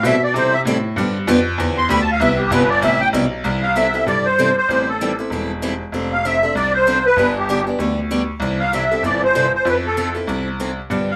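A fast swung 4/4 at 193 BPM drives this playful acoustic string swing in C major, a short cut from a longer piece. The reedy, shimmering musette accordion sits up front with the melody and takes a solo over the opening 3.4 seconds, while a boxy, picked parlour steel-string guitar with fresh strings and audible finger squeak supplies the accompaniment. A brilliant, worn concert grand piano carries the deep bass, all set in a modest small-room ambience with some lossy compression artefacts.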